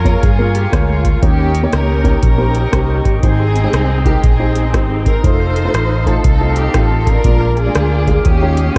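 Uptempo gospel at 120 BPM in 4/4, swung on the eighths in Ab major, this short excerpt feels uplifting and reverent. A lush studio string section carries the melody with vibrato and portamento, sounding expressive yet distant behind a touch of delay. An intimate upright piano accompanies with a woody, natural tone, its action noise audible, while a clean tonewheel organ holds sustained chords high above through a slow rotary speaker. Up front, a round, punchy fingered electric bass sits dark and amped alongside an analog drum machine whose deep kick, metallic hats and rim click carry a gritty, vintage sampler edge and the feel of a small room. Light digital ambience and cassette tape colour the whole mix as the harmony moves from Db6 and Eb7 through Abmaj7, F7 and Bb7 before settling on Eb9sus4 at 8.3 seconds.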